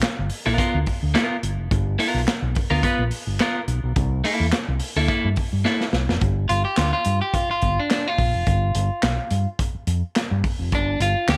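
A crunchy breakbeat kit opens this strutting, energetic funk piece at 106 BPM with a swung 16th feel, its gritty, saturated kick, snare, hi-hat and handclaps sitting up front with a dark, rolled-off top. A round, punchy fingered bass and a compressed, slightly broken-up picked electric guitar with spring reverb join almost at once over G7#9 and C13. After a drum fill at 5.7 seconds, a clean electric guitar solo enters at 6.2 seconds above a G7(no3) chord, all in a dry, close-sounding room.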